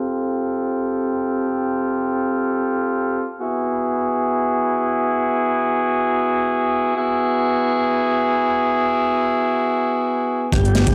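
A mellow, roomy horn section plays stabs through an analog delay under a filter sweep from 0.0 to 10.5 seconds, drifting in free time from G9sus4 to F#9sus4, before a brief burst at 10.5 seconds brings in a slow-rotary tonewheel organ riff, up-front picked electric bass, a crunchy breakbeat kit with a punchy kick, and a faint overdriven garage kit with metallic hats, giving this raw breakbeat piece a gritty, dry small-room sound.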